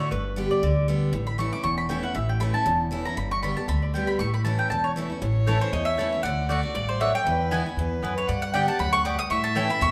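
This fragment of a longer bluegrass piece races along at 235 BPM in A mixolydian, with a swung, lively and virtuosic feel. A full-bodied jumbo acoustic guitar sits up front with picked accompaniment, while an upright bass played pizzicato adds a dark, woody bottom and a bright, up-front mandolin punches in stabs from the start. The harmony moves between G and A, then shifts through D and E before returning to G and A. At 5.2 seconds a rich, nasal fiddle with a reedy gut-string tone enters close by on a second line, and at 5.5 seconds another mandolin takes the melody, its doubled strings ringing clearly above the band. A large studio reverb gives the ensemble a spacious, wet sound.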